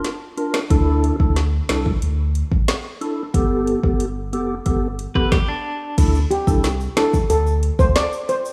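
A shimmering steel pan takes the melody at 6.3 seconds, played close-miked and dry with soft rubber sticks, lending a mellow, full voice to this hypnotic, sultry dancehall groove in straight 4/4. From the start, an up-front tonewheel organ with a flute-like tone, third-harmonic percussion, key click, chorus vibrato and a slow rotary speaker carries the accompaniment through Bb, Dsus2 and Gadd9. An electronic, produced afro-pop drum kit with a deep kick, woody snare, metallic hi-hats, rim clicks and crash sits forward in the mix, and a thick, saturated sub bass with a fast attack and sustained tones joins at 0.7 seconds. Brilliant, twangy clean electric guitar arpeggios with tremolo flash by briefly, and a ringing acoustic tube shaker sounds distantly in a large room as the second section arrives at 6.0 seconds. The whole has the rough feel of a home demo mix with light reverb and studio ambience, cut from a longer piece.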